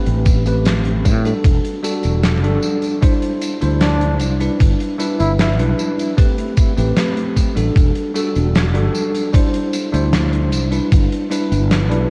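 Nostalgic and woozy, this 76 BPM vaporwave excerpt in E minor drifts over Am9, Em11, D9sus4 and G6 chords, with a bell-like, clean tine electric piano carrying subtle chorus, 12-bit sampler grit and tape echo, a growly, up-front fretless electric bass, a thumpy, tape-warm electronic kick, and a huge arena drum kit with fat snare, hi-hat and tambourine, while a mellow, punchy flugelhorn with tape echo sounds a brief solo from 3.8 to 5.5 s, all set in a moderate concert hall reverb with cassette tape character.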